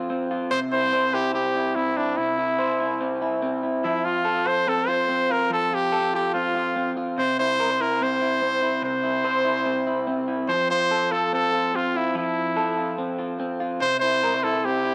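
An electric guitar played through a small old amp opens at 0.0 seconds, picking arpeggios with a slightly broken-up, lo-fi tone and a touch of spring reverb. A bright trumpet enters at 0.5 seconds and carries the melody as a pop-style solo, punchy yet smooth on top, with a light vibrato. This breezy indie pop cut moves at 145 BPM in a straight 4/4 and sits in F major, alternating between F and C chords. Both parts sit up front in a dry, gritty recording touched with light studio reverb, and the guitar's picked figures continue alongside the horn's lines throughout this short section taken from a longer piece.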